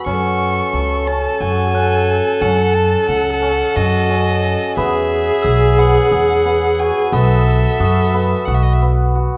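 Contemporary chamber music in a playful, shimmering 7/8 at 178 eighth-note beats per minute, this brief excerpt moves through F#m, E and B7sus4 while a rich, bowed violin carries the melody with even vibrato and a biting edge. Beneath it, a ringing hammered cimbalom spins arpeggios, a clear, earthy viola with an airy bow traces a second line, and a woody, thumpy pizzicato upright bass sits up front. A soft, bell-like glockenspiel played with rubber mallets adds dry, mellow texture in the background, and the ensemble is set in a moderate recital hall reverb.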